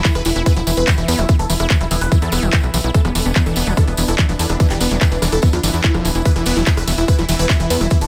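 A straight 4/4 psychedelic trance groove runs at 145 BPM, anchored by a tight, up-front electronic kick and a layered drum kit of handclaps, metallic hi-hats, ride cymbal and rim clicks, with a jingly acoustic tambourine in the background. Beneath it, a punchy, nasal sequencer bass drives in the low register from 0.2 seconds, while a squelchy, gritty acid bass with distortion and delay plays a riff further back. The mood is hypnotic and psychedelic: a detuned supersaw stab carries the melody through phaser and tape echo, and a bubbling texture with random filter steps holds sustained chords, colored by chorus and its own reverb. Sidechain pumping shapes the stab, the acid bass and the bubbling texture. A blurred, cloudy granular pad drifts very quietly, and a juicy, ring-modulated blip pluck adds a faint second line. The mix is dry overall, and the passage is cut from a longer piece.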